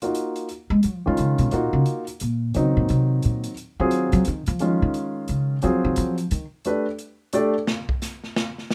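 Grand piano and a swinging drum kit open this brief, spiritual and searching modal jazz excerpt in Eb dorian at 175 BPM in a swung 3/4, with the intimate piano's audible action noise sitting up front over an Ebm11 chord. From 0.7 s a woody, thumpy upright bass on gut strings takes a pizzicato solo, dark and close, while the harmony shifts to G at 6.7 s. The drums, with their punchy kick and medium-tuned snare, finish alone with a short solo from 7.7 s in a dry studio sound.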